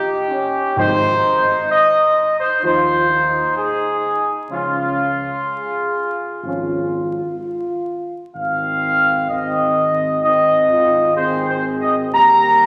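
Bathed in the wet reverb of a scoring stage with a layer of vinyl crackle, this majestic, triumphant classical fanfare in Ab major moves at a stately 63 BPM, as a dark, up-front trumpet section carries the melody over sustained chords from mellow French horns, joined at 0.8 s by trombones and a solo tuba bass, all three touched with light vibrato, while articulate hard-mallet timpani sit in the background until 2.1 s.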